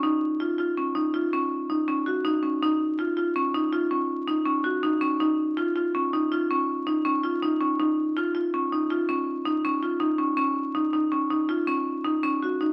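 The recording carries the worn character of a very old 78 rpm record, with vinyl crackle running beneath the music and a wet studio reverb of about 0.9 seconds giving the notes a lingering halo. This brief cut from a longer progressive instrumental piece moves at 162 BPM in 7/4 with a straight feel, tuned slightly flat at A4 = 439 Hz. A solo marimba played with hard mallets carries everything from 0.0 to 12.7 seconds, its tone bright and percussive and placed up front. It stays within a narrow span from Db4 to Gb4, which keeps the line close and concentrated. The mood is intricate and brooding, the odd metre and hard attack lending the passage a restless, inward tension.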